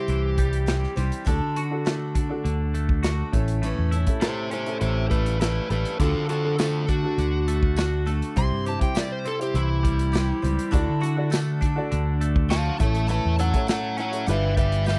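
This dry, close studio recording in a 1970s style has little reverb and carries a hopeful, open-road mood. It is folk rock and heartland rock in a straight 4/4, cut from a longer piece, with an overdriven slide guitar playing a solo melody up front throughout. Beneath it, a growly, amped fingered electric bass and a polished country drum kit with a punchy kick and medium-tuned snare sit prominently, both entering at 0.1 seconds. A twangy, compressed twelve-string electric guitar plays a riff colored by phaser, while a bright picked steel-string acoustic guitar and a warm baby grand piano fill in quietly behind. A jingly tambourine joins from a distance at 6.6 seconds, and the harmony moves among C, D and A before landing on G7.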